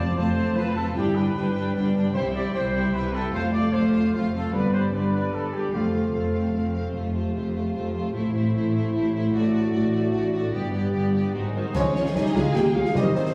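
Heroic adventure film score in 3/4, cut from a longer piece, where lush bowed violins carry a distant vibrato melody over a focused second violin line, with violas in the background, close cellos and expressive double basses beneath. Mellow French horns hold sustained chords while clear, roomy trumpets add stabs and soft, round timpani sound at the start; vintage trombone chords join at 6.9 s, a hollow silver flute line enters at 11.5 s, and snare, bright clash cymbals and bass drum arrive at 11.7 s, the whole set in a reverberant recital hall heard from further back.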